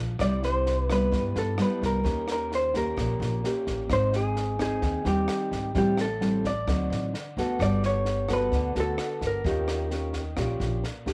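A moderate spring reverb lends this short fragment of a longer bossa nova piece a soft halo, with the nylon-string guitar and the hollow-body jazz guitar sitting up front. At 130 BPM in a straight 4/4, the mood is smooth and melancholic. The thumb-plucked, classical-sounding nylon-string guitar carries the accompaniment from the start, while the pizzicato upright bass on steel strings adds a woody, thumpy low end colored by transformer saturation. The vintage hollow-body guitar takes the melody from 0.2 seconds with a dark, clean, compressed picked tone. A compact cocktail kit joins at the same moment, with a dry, punchy kick, rim clicks and a high-tuned snare. The harmony moves through Cmaj7, Eb7, Abmaj7, Am7, D7b9, Gmaj9 and Eb9 before the fragment ends at 11.1 seconds.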